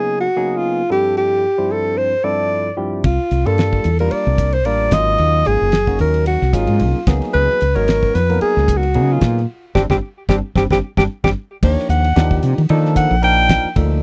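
A breathy alto saxophone with vibrato carries the melody from the start over a barky, lightly overdriven tine electric piano with analog chorus, voicing lush suspended chords in this bright, soaring excerpt of electric jazz fusion at 112 BPM with a gentle sixteenth-note swing. At 3.0 seconds a round, punchy fretless bass with a woody, hollow tone and a damped 70s drum kit with a fat snare, tight kick and rolled-off top join in. The band hits an accent at 9.5 seconds, a short drum fill leads to a new section at 11.6 seconds where the saxophone takes a solo over a major-ninth chord, all captured in a dry, close 1970s-style studio sound.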